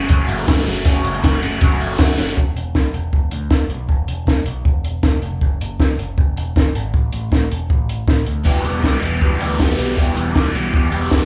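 Cool and bittersweet, this short indie rock excerpt in E dorian moves at a straight 158 BPM, with a growling, overdriven picked electric bass running throughout under a compact cocktail drum kit whose punchy kick, high-tuned snare and hi-hat sound dark and smooth up front, while a crunchy, double-tracked overdriven guitar with phaser plays its riff from 0.0 to 2.4 seconds and returns at 8.4 seconds, all heard as a band playing live in one room with a moderate large studio reverb.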